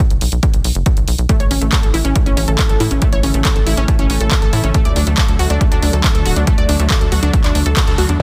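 Driving and bittersweet, this uplifting trance excerpt opens on a punchy, up-front electronic kick, a layered big-room kit of handclaps and pumping hi-hats, and a tight sawtooth sequencer bass that pulses with sidechain pumping. At 1.3 seconds a lush, chorused unison pad enters in the background, alongside a detuned pluck arpeggio coloured by cassette tape and tape echo, as the harmony moves from B5 to A and then D. A band accent lands at 7.8 seconds, all within a dense, heavily limited modern master with digital ambience.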